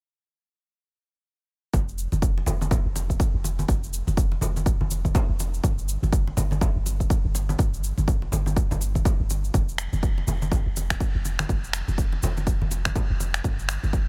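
A dry, close-sounding mix opens this driving, earthy afro house excerpt, with every part arriving at about 1.7 seconds on a swung sixteenth-note groove. A punchy, layered electronic kick sits up front with a tape-like warmth and a small-room character, while a deep, boomy 808-style sine bass with a noise layer pumps against it under a filter sweep. Compressed, saturated congas played with soft hands fill in around them, and electronic cabasa and finger snaps sit lower in the blend until the clip stops just after 14 seconds.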